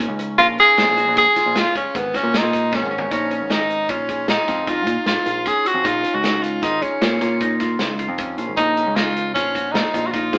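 A clear tenor saxophone carries the melody up front from 0.4 seconds, its jazz-style solo lines shaded with light vibrato across a tense, driving stretch of progressive instrumental band music. The piece moves at 154 BPM in 7/4 with a straight feel, centered on Bb minor and rooted in a Bbm7 chord before shifting to Ebmadd9/Bb late in this cut from a longer piece. Beneath the horn, a qanun played with fingerpicks spins bright-edged arpeggios from its triple strings, while a picked electric bass adds punchy, amped low notes. A natural country drum kit with a medium-tuned snare and tight kick works hi-hat and toms, and drops a fill at 2.7 seconds that leads into the second section. The band plays live in one room, bathed in moderate stone room reverb and heard through an AM radio sound.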